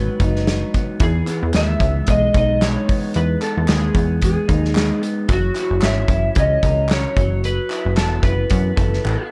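A fingerpicked electric slide guitar carries the melody, its tone compressed and slightly broken-up, colored by analog chorus as it moves between F#4 and E5. This brief 9.3-second cut from a longer bedroom-pop and indie-pop piece feels dreamy and nostalgic, moving at 112 BPM in 4/4 in E major with a light swing on the sixteenths. Beneath it, a twangy, bright electric guitar through a small old amp picks out the accompaniment, drenched in lush chorus and a warbly pitch drift. A plucky analog bass sits up front with a punchy, funky sawtooth and pulse-wave sound and a fast-attack filter pluck, while a loose acoustic indie drum kit enters at 0.2 seconds with a punchy kick, medium-tuned snare and hi-hat in a pumping small room. Distant, hollow group handclaps join at 1.3 seconds, and the harmony drifts from G#m7 to Emaj7, F#7 and B7sus4 before a drum fill at 9.0 seconds, all held in a small room reverb.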